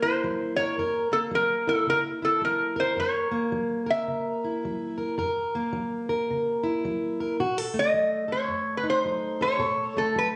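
Acoustic country blues with a gritty, swaggering mood, cut from a longer piece, with a swung feel that moves from an F#7 chord to B7 at 7.4 seconds. A lap resonator guitar carries the melody up front, its slide tone metallic and nasal yet mellow, played with fingerpicks, while a fingerpicked, plugged-in jumbo steel-string acoustic guitar supplies full-bodied accompaniment beneath it. The phone recording in the room sits in light reverb.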